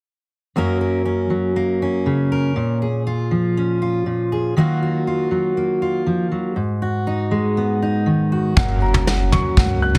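A full-bodied, fingerpicked jumbo steel-string acoustic guitar sits up front and carries this hopeful, nostalgic indie folk piece alone from 0.6 seconds. At 120 BPM in a straight 4/4 and in F# major, the guitar moves through F#, A#m7, D#madd9 and G#m7 before returning to F#. At 8.6 seconds the arrangement builds as three more parts join together. A woody upright piano adds high arpeggios, a dark, thumpy pizzicato upright bass with gut strings takes the low end, and a soft brush drum kit brings a punchy kick, a medium-tuned snare with soft clipping, and toms, with a rolled-off top and a small-room feel. The overall sound is dry, with a dense, heavily limited modern master, and the clip ends at 10.0 seconds as part of a longer piece.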